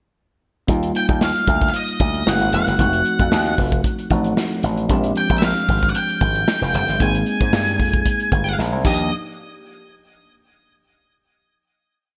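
An up-front octave-fuzz lead guitar, dark and distorted, picks a motif-based melody over a punchy, enveloped slap bass line, a crisp sixteenth-note groove from a bright studio drum kit with gated reverb, and worn, slightly out-of-tune tine electric piano chords with subtle chorus in this upbeat, breezy 1980s jazz-funk pop piece in Eb major at 114 BPM, moving through Ebmaj9, Gb9, F7b9, Bb13 and Abmaj7 before a drum fill at 8.6 seconds leads to a final hit at 9.1 seconds.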